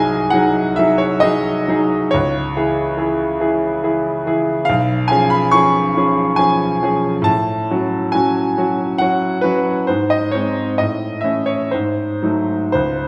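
Classical romantic nocturne for solo piano, a melancholic, mournful fragment of a longer piece in C# minor, moving in a rubato 3/4 at roughly 57-71 BPM. The grand piano sits up front with a bright, vintage tone and long sustain, spanning B1 to C#6 and bathed in the wet reverb of a recital hall. Its harmony drifts from G#7/B# into C#m, then through C#7/B and F#m/A before passing through G# and A to a tense G#7b9 at 11.7 seconds.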